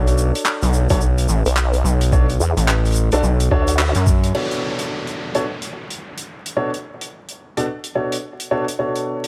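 A dry, close-sounding mix sits under a steady layer of vinyl crackle in this funky, gritty glitch hop excerpt at 108 BPM in 4/4, with a 61% swing on the sixteenths and a B minor home on a Bm9 chord. A warm, intimate grand piano plays up-front stabs throughout, its action noise audible and its long sustain shaped by sidechain pumping and delay. An aggressive, sawtooth-edged driven synth bass with oscillator sync and a resonant filter pluck carries the low end through the first half, joined by a thumpy, pitched-down, tape-warm electronic kick. At 1.5 seconds, a nasal, wobbling vowel-sweep bass with a formant filter and chorus pushes forward, and the band hits an accent at 3.8 seconds. From 4.3 seconds the basses and kick fall away, leaving the piano and an airy, polished acoustic kit of crash, handclaps, hi-hat and shaker over a faint electronic downlifter and riser.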